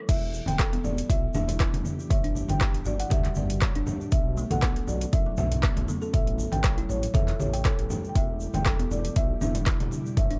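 Spiritual and earthy, this afro house excerpt at 119 BPM in E dorian rides a deep, overdriven electronic kick up front and a rumbling, detuned saw bass that pumps against it, while woody marimba melody and plucked kalimba arpeggios trail tape echo over an ethereal airy pad, an afro-pop drum kit with metallic hats, grainy egg shaker and low-tuned congas set back in a large room, moving through Em, Gsus2, Bmadd9 and A7 in a dry, gritty hardware sound.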